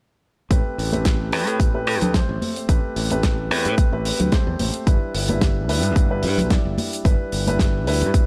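A lightly swung 16th-note groove at 110 BPM in 4/4 drives this groovy, sensual nu-disco clip in A minor, cut from a longer piece: a punchy, tape-warm electronic kick sits up front, joined by a dry, damped 70s kit playing hi-hat and a medium-tuned snare, while ringing congas enter in the background at 0.9 seconds, a bright, growly fingered electric bass holds the low end up front, and a dark, mellow baby grand piano with long sustain, sidechain pumping, a low-pass filter and analog delay plays Am9 before moving to Em7/G at 4.9 seconds, all within a small room ambience.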